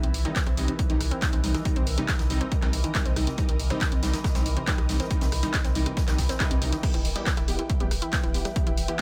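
A light digital ambience surrounds this intense, relentless stretch of driving peak-time techno at 139 BPM, cut from a longer piece, where a dry, punchy electronic kick sits up front from 0.4 seconds and a dry analog drum machine adds crash, handclaps, hi-hat and rim click, while a compact acoustic cocktail kit with a high-tuned snare and filtered hats enters at 0.1 seconds in the background. Beneath them a deep, round sine sub bass with overdrive and a low-pass filter pumps with sidechain compression, and a nasal, wave-folded analog pluck riff with tube saturation, chorus and delay works in the background. Bright, aggressive detuned rave stabs with reverb and delay cut over a resonant, ring-modulated drone with moving overtones and an ethereal, airy pad, as the harmony moves from C minor to E minor at 6.8 seconds.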